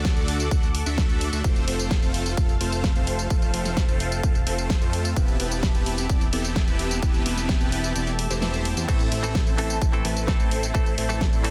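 A punchy, up-front electronic kick drives this euphoric, emotional festival progressive house excerpt at 129 BPM in 4/4, alongside a big-room drum kit with a huge snare, crash, hi-hat and tambourine, a fat analog bass and bright, detuned supersaw chords carrying a riff with phaser, 12-bit sampler grit and digital delay, the bass and supersaws pumping together with a lush, chorused unison pad, before the kick drops out at 8.0 seconds, a very quiet electronic swell appears at 8.2 seconds, and a twangy, direct-recorded clean electric guitar with delay enters at 8.9 seconds over the move to A minor, in a dense, heavily limited mix with little reverb.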